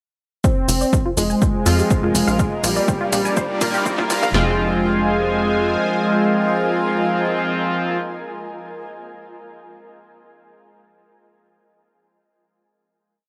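A punchy analog drum machine sits up front in this short, cinematic melodic techno piece, driving a tape-warm four-on-the-floor kick and snare at 123 BPM in F dorian, joined by layered electronic shaker and open hi-hats. Over a build on Fm moving to Bb, a thick, bold unison lead repeats a bright riff with vibrato, lush chorus and analog delay, while a plucky sawtooth-and-square bass plays funky off-beat notes and a tight, detuned sequencer runs a 16-step arpeggio in the background with a filter sweep, phaser and 12-bit sampler grit. An edgy sync-sweep polysynth with a nasal tone adds sparse, echoing power-chord stabs, and a drum fill from 2.4 seconds and a very quiet riser from 2.5 seconds lead into the final chord. From 4.3 seconds the piece rests on a held Fm, where the lead and stabs continue over an evolving, full-bodied resonant pad and a blurred, cloudy granular pad, with sidechain pumping keeping the hypnotic motion alive. 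The mix is dry and gritty, with a hardware character and little reverb.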